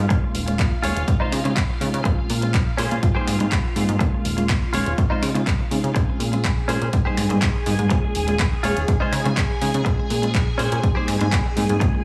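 A reedy electric piano with fast tremolo and phaser and a swirling, phased string machine open this nostalgic, funky filtered disco house excerpt at 123 BPM, over a plucky sawtooth analog bass, all three pumping under a low-pass filter, while a bright, twangy, direct-recorded clean guitar riff with spring reverb enters at 0.1 seconds alongside a punchy, up-front electronic kick and a tape-warm house kit of finger snaps, handclaps and pumping hi-hats, cycling through Eb9sus4, Dbmaj9, Bbm9 and Abmaj7 in a lightly reverberant studio ambience.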